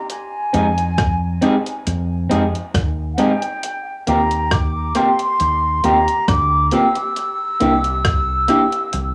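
Captured on cassette in a small room, this smooth, longing lovers rock reggae fragment sets an airy, slightly unsteady silver flute melody with tape echo and plate reverb over a thumpy, gated 80s drum machine, a round, punchy fingered dub bass, mellow phased tine electric piano and dark, slightly broken-up guitar stabs through a small old amp, moving from Fm7 to Eb6 to C7.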